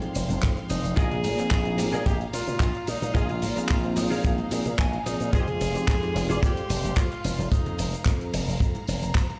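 A straight 4/4 nu-disco groove at 110 BPM in F minor, driven by a dry, up-front kick from 0.4 seconds, a tight funk kit with handclaps, hi-hat, ride, shaker and bright cymbals, soft-handed congas and tambourine tucked in the background, and a punchy slap bass through an envelope filter, all moving between Fm7 and Bb7sus4. A bell-like tine electric piano plays until 6.3 seconds and a clean, picked electric guitar riff with ensemble chorus adds a fill at 4.5 seconds, while a lush bowed string section pumps with sidechain beneath them. A clear tenor saxophone carries the cosmic, sensual melody with scooped notes, light vibrato and dub echo, and the whole excerpt sounds as if played on a big sound system in a bare stone room, with lossy compression artefacts.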